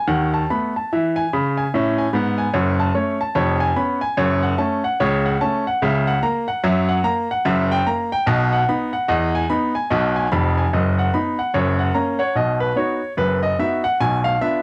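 A home cassette recording puts a baby grand piano up front in a moderate studio room, its clear, intimate tone carrying the soft grain of tape and the audible noise of the keys' action. This is a playful stride piano fragment at 146 BPM in 4/4, with a swing feel on the eighth notes. The piano plays alone throughout, ranging from E#1 up to B5. The harmony starts on a B7/D# and moves through chords such as F#m and C#7/E#, then settles into B major from 5.8 s by way of F#7b9, Emaj7 and B/F#. A new section begins on B at 12.4 s and turns to a Bdim before the clip cuts off at 14.6 s.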